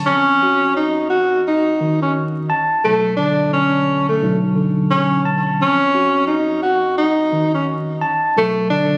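A swung sixteenth-note groove at 87 BPM in 4/4 sets up this moody, tough hip hop fragment. A clean tine electric piano opens at 0.0 seconds, up front and heard as if through its built-in speakers, with a cassette-tape color and filtering that trims its highs and lows. At 0.1 seconds a mellow tenor saxophone takes the solo melody in a jazz style, played with subtone, vibrato and scooped notes and a smooth top end, touched by digital delay. The harmony moves back and forth between Ebm9 and Bm7. A light reverb and small-room ambience surround the pair, and the sound of a phone recording in the room plus vinyl crackle give the whole clip a lo-fi grit until it cuts off at 9.0 seconds.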